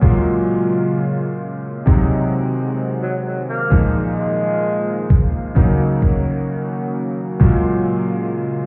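A bright, clangy electric grand piano sits up front through this faded, woozy vaporwave excerpt at 65 BPM in Gb lydian, its chords coloured by analog chorus and tape echo over a thumpy, sampler-style electronic kick that stops at 7.6 seconds. A lush, detuned sawtooth pad warbles beneath with slow-attack sustained chords, while a clear tenor saxophone briefly carries the melody with scooped notes from 3.0 to 5.1 seconds, roughened by 12-bit sampler grit and tape echo. The whole mix sounds muffled as if heard through a wall, wrapped in stone room reverb and cassette tape haze as the harmony moves from Gbmaj9 through Ab7, Bb7sus4 and Ebm7 back to Gbmaj9.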